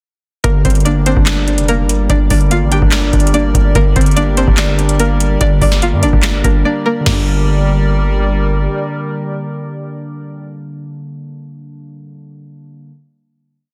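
A dense, heavily limited mix with light reverb frames this menacing, dark half-time trap piece, where a booming analog drum machine with a deep kick, crisp snare layered with clap and fast hi-hat rolls sets the beat while a distorted, saturated 808-style bass with pitch slides follows the kick. A twangy, string-like resonator pluck loops a chorused melody doubled in octaves, warbling lo-fi synth keys play an arpeggio in eighths, and a hollow, flute-like pad holds sustained chords, until the track falls silent at 6.6 seconds before a final chord rings out from 7.1 seconds, with the keys lingering until 12.9 seconds.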